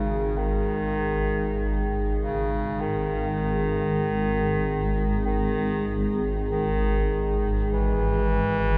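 Ominous and desolate, this dark ambient drone fragment drifts at 49 BPM in 4/4, tuned to A4 = 436 Hz. A swarming, detuned, wave-folded drone holds a low Ab up front, while a moody analog pad built from square and sawtooth waves sustains chords above it, coloured by ring modulation, chorus and shimmer reverb. Alongside them a clear, vintage-toned bass clarinet plays a classical-style solo melody through shimmer reverb and diffuse delay, inside a huge ambient space with an 8.9-second decay.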